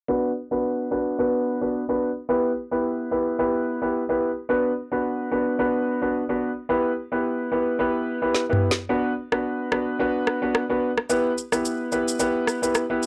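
A lightly swung 109 BPM afrobeats groove in 4/4 and B minor opens on a clear, natural concert grand piano playing up-front accompaniment with deep bass and short sustain through a low-pass filter sweep, moving between Bm and Em, and at 8.3 seconds an electronic afro-pop drum kit with a woody snare, rim click, shaker and toms enters with a fill, all in a dry, gritty cassette-tape sound that gives this sultry, mellow section cut from a longer piece its character.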